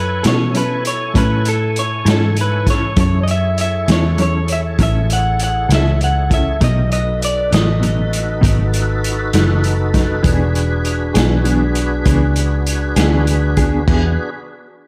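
This gritty, rollicking slow blues in E major opens with everything arriving almost at once: a slightly broken-up electric guitar through a small old amp sings the melody while a tonewheel organ holds sustained chords and a foam-muted picked bass anchors the low end. At 66 BPM in a straight-feel 12/8, a vintage drum kit with a punchy kick, a medium-tuned snare, hi-hat and crash sits up front with a muffled, rolled-off, lo-fi character, alongside the dark, round bass. The lead guitar is fingered and compressed, and it stops at 9.3 s, leaving the rest of the band to carry on. The organ is full and lightly overdriven, turning through a slow rotary speaker with chorus vibrato, while a clean, mellow second guitar plays accompaniment in the background with tremolo and slapback echo. The chords move from F#m7 to B7 at 6.6 s and E7 at 10.2 s, and the whole fragment, cut from a longer piece, sits in a lush hall reverb over small room ambience that lends it a big arena sound.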